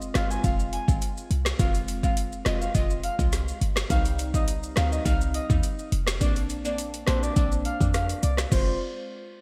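Bright, digital 1980s-style production with light reverb and a digital ambience frames this short dancehall excerpt, which feels tough and hypnotic in a straight four-beat groove. Up front, an electronic afro-pop drum kit hits with a deep kick, woody snare, metallic hi-hats, rim clicks and a crash cymbal, all roughened by overdrive and a gated reverb, re-recorded in a small room. Beneath it, a short 808-style bass gives a punchy, tight sine tone with a noise layer and fast decay, while maracas add a bright, close and dry shimmer in the background. A crystalline wavetable pluck with detuned, ring-modulated edges, a filter sweep and a moving notch pumps against the beat through sidechain, with chorus thickening its chords of F minor, C minor and B-flat add9 before returning to F minor at 8.5 seconds. From 0.2 seconds a soft, breathy, flute-like synth lead carries the melody high above, its sustained notes colored by vibrato, chorus and delay.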